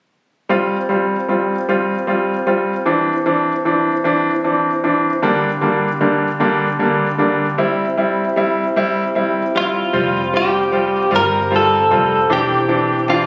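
A bright baby grand piano opens this swaying, tender pop fragment in 6/8, playing alone from 0.5 s with brilliant, polished chords that carry long sustain and audible action noise, cycling from Fsus2 through Cadd9/E, Gm/D and C. At 9.6 s a clean, direct-recorded electric guitar takes up the melody with a picked, compressed tone and tape echo, and at 9.9 s a vintage foam-muted electric bass enters low in the mix with a dark, round, punchy sound. A lush hall reverb surrounds the parts in this phone-in-the-room recording, with the piano intimate and up front.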